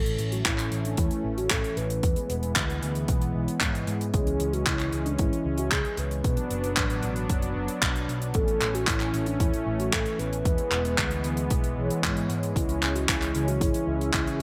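A soft, octave-layered synth lead carries the melody with a round, detuned tone, a sine sub-octave and vibrato, colored by chorus, phaser and delay. Beneath it, a smooth analog pad holds sustained chords with a touch of 12-bit sampler grit, while dark, brassy synth stabs with a filter sweep sit in the background over the A, E, C#m and Bm changes. A round, amped picked electric bass and a dry, up-front funk kit of handclaps and hi-hat with gated reverb lock in from the start, joined by a punchy, tape-tinged electronic kick from 0.5 s, giving this sunny, romantic italo disco fragment its straight, steady groove.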